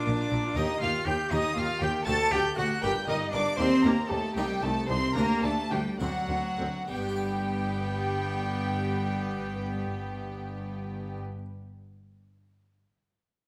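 Stormy and driving, this fragment of a baroque-style concerto movement in 6/8 sets a rich, close solo cello on the melody, with a violin section also carrying the melody high above, a second violin section tracing a second line, and a dark, distant viola section filling in beneath. A dry, plucked harpsichord accompanies in the background, while a bowed cello section, also in the background, joins the double bass section on the bass line, and every string part carries a reedy, gut-string period tone. The music slows between 2.8 and 6.9 seconds as it arrives on a G chord, all heard within the wet reverb of a recital hall.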